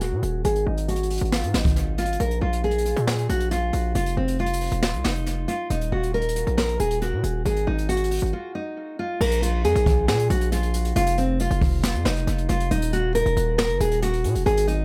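A half-time 4/4 pulse at 137 BPM drives this eerie, menacing trap fragment, where brushed jazz drums with dark cymbals and a boomy kick sit beneath a heavy, saturated 808-style bass and an up-front, full-bodied fingerpicked nylon-string guitar melody that opens through a filter sweep and trails tape echo, all in an echo-heavy small room, with a break at 8.3 seconds before the chords move through Bb5 and a rootless Cmadd11/F to Ebm.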